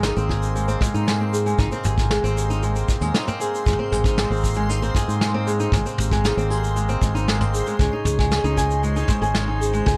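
A fingered electric bass, round and up front with tube saturation, anchors this delicate, playful folktronica excerpt at 116 BPM in Ab major, as a flamenco guitar's fingerpicked arpeggios carry 12-bit sampler grit and digital delay, a clanky, slightly out-of-tune toy piano adds a bell-like second line through its own delay, a reedy hand-pumped harmonium holds sustained chords, a vintage brush kit of shaker, snare and toms is joined by a tight kick from 0.3 seconds, and a dreamy backwards swelling texture glows in the background over a dark, lightly reverberant small-room production moving from Abadd9 to Dbsus2.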